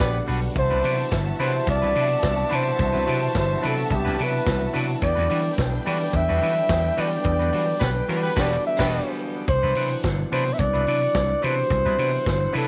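An up-front flugelhorn carries the melody in this glamorous, danceable disco cut, its jazz-style lines smooth and lightly vibrato-tinged with scooped notes, over a bright, growly slap bass and a punchy vintage drum kit with dark cymbals. Lush bowed violins add a second line until 9.0 s, while a mellow tine electric piano, a twangy clean guitar and a very quiet tonewheel organ with key click and slow rotary fill out the harmony. A background horn section plays stabs at the start and again at 7.8 s, trailed by tape echo, as the band hits accents within a light reverb.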